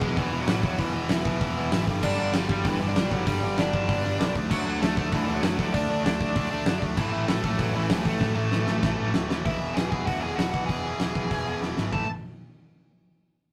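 Rebellious and rowdy, this punk rock excerpt in straight 4/4 pairs a dark, high-gain lead guitar melody and a punchy drum kit with fat snare and bright cymbals, both up front, over background riffs from tight distorted and crunchy overdriven guitars, a very quiet double-tracked fuzz guitar that drops out at 9.4 seconds, and a growly overdriven picked bass, all in a rough rehearsal-room recording with tube saturation and drum fills at 8.2 and 11.6 seconds.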